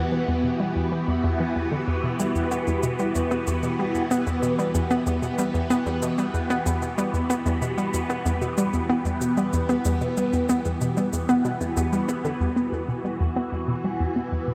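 A bright, swirling string machine holds sustained E minor chords through ensemble chorus and phaser, while a hollow, bouncy square-wave pluck with a detuned, wave-folded edge repeats a low riff through chorus and delay, both sitting up front from the start. This hypnotic, expansive slice of sequencer-driven space music moves at 94 BPM in 4/4, and from 2.2 seconds a tape-warm layer of cabasa and electronic percussion blips drifts in the background with delay. At 12.4 seconds a filter sweep colours the synth arpeggio, all of it bathed in a huge, wet reverb with an 8.0-second tail.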